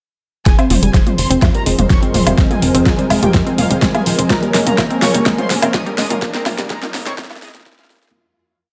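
Hypnotic and cinematic, this short melodic techno build runs at 125 BPM in F minor, with an overdriven four-on-the-floor kick and a fat-snared deep house kit of hats, low tom and woodblock up front over a tight, nasal sequenced sixteenth-note bass with tube saturation, all moving from Fm to Bbm7 at 4.3 seconds. A fat, detuned analog lead riffs in sixteenths over a pedal note, doubled an octave higher by a lush bowed violin section, while a bright detuned pluck loops a 6-step arpeggio that drifts against the bar and a thick unison pad with 12-bit sampler grit holds the chords, with filter sweeps on the pluck, lead and pad and sidechain pumping on the melodic parts. From 1.9 seconds a swarming, granular drone and an ethereal airy pad of slowly shifting chords join, a very quiet riser enters at 4.5 seconds, and the whole build fades out across its final seconds under light digital ambience.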